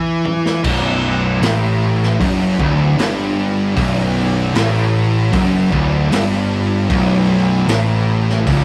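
Ominous and brooding, this short stoner and doom metal excerpt moves at a slow 77 BPM in B minor, cut from a longer piece. It opens with a brief break and drum fill from the raw garage drum kit, its punchy kick, medium-tuned snare, toms, hi-hat and dark crash cymbals sounding saturated and gritty in a small, pumping room with a rolled-off top. Two thick fuzz guitars carry the riff from the very start, one dark and very quiet, the other warm and distorted, sitting between B1 and E3. At 0.6 seconds the music settles onto B minor as a bright, high-gain distorted guitar, double-tracked, joins the riff lower down, while a growly, overdriven fuzz bass sits up front with a bright, direct-and-amped bite reaching down to B0. Light reverb and the rough rehearsal-room sound give the whole passage a heavy, unpolished weight.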